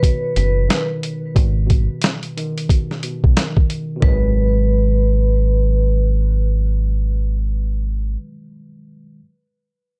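A swung 4/4 boom-bap groove opens this short, moody hip-hop clip, its sampler-style kit compressed, pitched down and gritty, with a thumpy kick, a medium-tuned snare, hi-hat and toms sitting up front until the drums drop out at 4.2 seconds. A deep dub fingered electric bass joins almost at once, its dark, round, amped tone holding the low end up front. Above it, a worn, slightly out-of-tune tine electric piano lays down mellow, clean accompaniment through cassette-tape colouring and plate reverb, lingering on alone until 9.2 seconds. Higher still, a vibraphone struck with medium hard mallets carries the melody with a metallic, ringing voice, a medium motor vibrato, tape echo and plate reverb, then falls away at 6.0 seconds. The harmony rests on a minor chord that shifts to its minor seventh as a second section begins, and the whole track has a dusky, lightly reverberant production.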